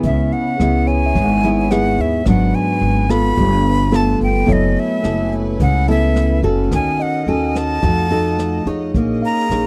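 Melancholic and intimate, this dry, close 1970s-style bossa nova cut from a longer piece moves at 108 BPM in C# minor, with a breathy, bright jazz flute carrying the vibrato-laced melody up front over fingerpicked nylon-string guitar with audible finger squeak, a woody, thumpy pizzicato upright bass, a dark, boomy brushed drum kit playing hi-hat, kick and rim click, and, in the background, a clean tine electric piano adding accompaniment while a rich, bowed chamber string section holds sustained chords through changes such as C#m7, G9 and F7b9.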